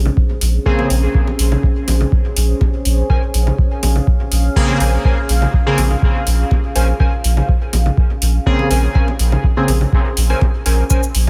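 A steady, straight 4/4 dub techno groove set on a deep, up-front electronic kick, metallic hi-hat and cabasa, and background congas and bongos with dub echo carries this cavernous, nocturnal fragment, where a round sub bass and a moody pad holding a single Bbm9 chord pump against the beat, a resonant, filter-swept polysynth stabs through phaser and dub echo, and a warbling lo-fi synth keys riff enters at 3.1 seconds.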